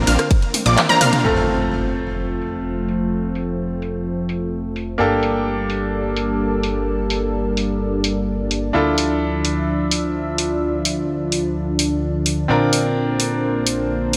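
This excerpt from an uplifting, triumphant festival progressive house track opens at 128 BPM in F major, with a lush unison pad holding sustained chords under a bright, punchy unison pluck arpeggio carrying cassette tape colour and digital delay, and huge, detuned supersaw chords riding 12-bit sampler grit and digital delay. The house drum kit enters at 0.1 s, with a fill from 0.5 s leading into a band accent at 0.8 s. At 1.2 s the pluck and supersaws drop out as an electronic impact lands and a bright, brilliant grand piano takes up the accompaniment with the same gritty sampler colour and delay. Beneath it all, a fat, saturated analog bass sits low and mellow. The pad, bass, pluck, supersaws and piano pump with sidechain against the up-front kit of claps, rim clicks, toms, bright hats and ride and crash cymbals, while filter sweeps shape the drums and the warbling, chorused pad. The chords move from Bbadd9 to F, then through Gmadd9 and Dmadd9 back to Bbadd9, set in a moderate hall reverb of 1.7 s.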